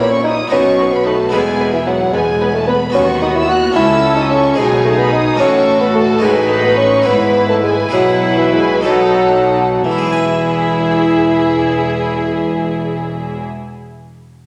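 Festive and lively, this baroque-style concerto movement in E major flows in a straight 6/8 at 59-75 BPM, with a dark, smooth-topped solo bassoon singing the melody up front over rich, expressive chamber violins, a clear viola section and smooth cellos in the background, focused double basses, and a bright plucked harpsichord, all set in a wet scoring-stage reverb as the music slows between 5.4 and 9.8 seconds before settling onto an E chord.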